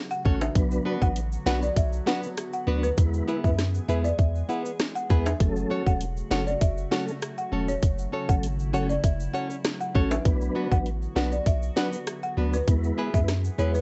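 Up front, a tight electronic drum kit with a sharp snare, rim clicks and a punchy, deep sine sub bass drive this bouncy, tough dancehall groove, cut from a longer piece. A woody, dry marimba carries the melody through a delay, over a flute-like tonewheel organ spun by a fast rotary speaker, fingerpicked nylon-string guitar arpeggios, bright shakers and timbales, and a glassy FM pad that sits ethereal in the background. The whole mix has a worn cassette character, with warbling pitch drift and dulled highs, as the chords cycle from F#m through Bm to E.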